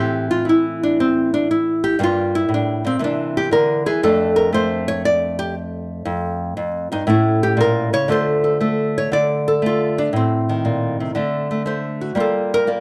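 Sophisticated and playful, this brief cut from a longer solo jazz piece swings at 118 BPM in 4/4 as a fingerpicked nylon-string guitar, boxy, small and up front, moves from F major into D minor at 8.1 seconds through chords such as C9, F6, Dm7 and D7, spanning F2 to D5 in a large studio's moderate reverb.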